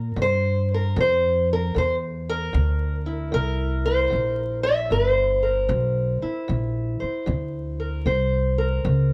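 A boxy, fingerpicked parlour steel-string acoustic guitar carries the melody up front over a woody pizzicato upright bass in this swaggering, rollicking acoustic country blues excerpt, which swings at 76 BPM in 4/4 on a C7 chord in C mixolydian, tuned slightly flat to A4 = 437 Hz, with both parts playing throughout the 9.1 seconds under light reverb, vinyl crackle and a dark, warm production.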